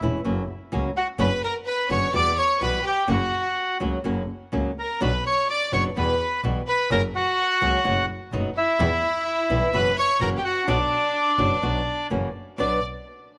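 A fingerpicked flamenco guitar and a bowed double bass open this passionate, dramatic tango fragment in B harmonic minor, the guitar warm and up front with audible finger squeak and the solo bass clear and focused with vibrato. At 1.0 seconds a reedy, vintage-sounding bandoneon takes the melody, its band-limited tone sitting prominently up front as the loudest part. A bright studio violin section enters at the same moment as a second line beneath it, bowed with light vibrato and a biting, intense edge. The tempo sits around 127 BPM in 4/4, but the feel is rubato, pushing and pulling with the drama of the phrasing. The harmony circles between Bm, Emadd9 and F#, tightening through B7/F#, Em and F#7sus4 to F#7 before resolving on Bm at 12.6 seconds. A light studio reverb gives the ensemble a touch of space, and the passage is cut from a longer piece.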